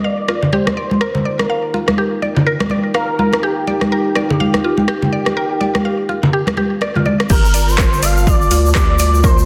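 Congas sit up front with a bright, vintage, band-limited tone, driving this spiritual, hypnotic afro house excerpt with a swung sixteenth-note feel. Alongside them, a smooth, expressive synth lead sings the melody through ensemble chorus, cassette tape character and delay, while a dark analog pad holds sustained chords with phaser and sidechain pumping. A woody, mallet-like FM pluck spins arpeggios, and an electronic afro-pop kit of handclaps, metallic hi-hats, rim clicks and crash cymbal adds overdriven, filtered grit from 0.3 seconds. At 7.3 seconds the drop arrives as the harmony moves from Ebmaj7 to Gm7, the congas stop, and a punchy, overdriven electronic kick, a round, deep analog bass and a grainy, distant egg shaker enter. A moderate recital-hall reverb surrounds the parts, and the dense, heavily limited master keeps the sound full and loud.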